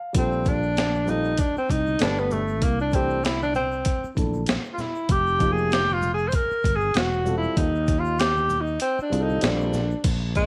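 A breathy tenor saxophone takes a mellow, whispered solo over a dark, intimate grand piano, gritty boom bap drums with a thumpy kick and high-tuned snare, a fretless electric bass, and very quiet egg shaker and congas in this cool jazz-hop excerpt at 97 BPM in Bb major, moving from Bbmaj9 through C7 and Fsus2 back to Bbmaj9 as the kick drops out at 8.8 seconds.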